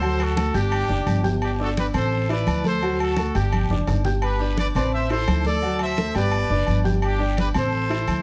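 Joyful and sunny, this salsa excerpt sets a bright, tight trumpet section with light vibrato up front on the melody over a thumpy, woody pizzicato upright bass and a warm, long-sustaining upright piano accompaniment, while ringing agogo bells and timbales, thick-skinned congas struck with hard hands, and a raspy guiro sit in the background, with a drum fill from 3.5 to 4.2 seconds and a light reverb.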